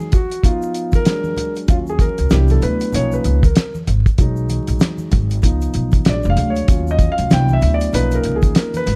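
A swung 96 BPM groove in 4/4 drives this cool, smoky jazz-hop excerpt, where a dark grand piano with audible action noise solos throughout over a cloth-damped, thuddy drum kit with a fat snare and tight kick, bright congas and tube shaker sit in the background, and a woody pizzicato upright bass enters at 1.7 seconds as chords such as Ebm7, Bb7b13 and Cmaj9#11 drift by under studio reverb and vinyl crackle.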